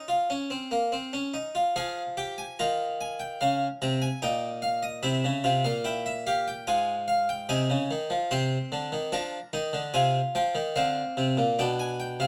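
A baroque-style classical fugue in three parts for solo harpsichord, this short excerpt cut from a longer piece sits in F minor at a measured 73 BPM in straight 4/4 time, carrying a contemplative, serious mood. The Italian-style harpsichord sounds plucked and brilliant, its octave strings adding sparkle as it spans from Ab2 up to C6. Placed up front and captured with close, detailed microphones, the instrument is framed by light reverb. A brief opening passage gives way at 1.8 seconds to a longer second section that runs to the end at 12.3 seconds. The harmony moves from F minor through Gm7b5 and C, then on to Fm/Ab, Cm, Dm7b5/C and finally G/B.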